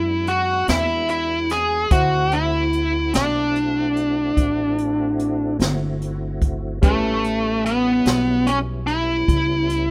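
Gritty and rollicking, this slow blues excerpt sways in 12/8 at 49 BPM, with a smooth overdriven electric lead guitar carrying the melody up front over chords moving from E7 to D7 and on to A9. A brilliant grand piano and a clean tonewheel organ, its chorus vibrato and slow rotary speaker adding shimmer, sit in the background, while a woody, thumpy pizzicato upright bass on gut strings anchors the low end. A punchy brushed jazz kit with a high-tuned snare joins at 0.3 seconds, natural and close in a studio room, and the whole excerpt has the rough feel of a home demo mix.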